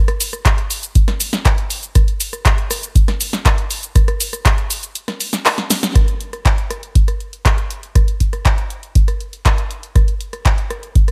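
House drum workout at 120 BPM in a straight 4/4, raw and driving, taken from a longer piece. A punchy analog drum machine carries handclaps, hi-hat, rim click, shaker and a punchy snare, with a short room on the snare, clap and hats, while a deep electronic kick enters at 0.5 seconds and sits up front with a tape-warm weight. The kick drops out from 5.0 to 6.0 seconds, leaving the machine to play a fill from 5.6 seconds and a band accent at 5.8 seconds before the second section begins at 6.0 seconds. Both parts sound analog and close, and the overall mix stays dry with little reverb.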